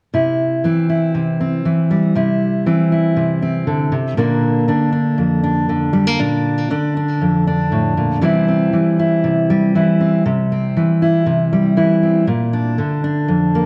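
Folk excerpt at 118 BPM in a straight 4/4, wistful and stirring, carried by a lone fingerpicked steel-string dreadnought guitar that sits up front with a full-bodied tone and audible finger squeak, moving between C and Bb chords under a moderate recital-hall reverb and the worn, warbling pitch drift of old cassette tape.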